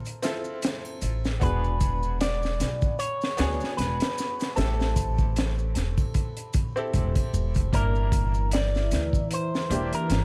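Vinyl crackle and studio reverb frame this smoky, cinematic trip hop fragment, cut from a longer piece and carried by a lightly swung sixteenth-note feel. A bright upright piano opens the recording with polished, brilliant accompaniment shimmering through harmonic tremolo and tape echo. A crunchy breakbeat kit sits up front with a punchy kick, a high-tuned snare and hi-hat, its saturated, gritty tone rolled off at the top, while maracas and triangle ring softly in the background of a small room. A pizzicato upright bass on gut strings enters at 1.0 seconds, woody and thumpy, and at 1.4 seconds a clean, picked electric guitar with an envelope filter takes the twangy melody, roughened by 12-bit sampler grit and tape echo. Over a progression of Fmaj7, E7, Am7 and Gm6, a deep, moody analog pad arrives at 8.2 seconds with slow-attack sawtooth chords, detuned and thickened by chorus, a sub octave and the same sampler grit.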